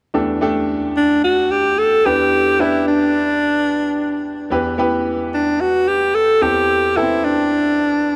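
A clear grand piano opens this short pop excerpt, setting a nostalgic, moody tone at 110 BPM in a straight 4/4. Its smooth, vintage tone and short sustain sit up front as it carries the accompaniment through chords that move from Dsus4/E to G/E, then Em and Am7/E, all resting over an E in the bass. At 1.0 seconds a breathy alto saxophone enters with the melody, bright and punchy, shaping its lines with vibrato and scooped notes in a pop style. Close-miked and up front, the solo saxophone carries a digital delay that trails its phrases. A moderate plate reverb lends the whole passage a lingering, moody space until it breaks off at 8.2 seconds.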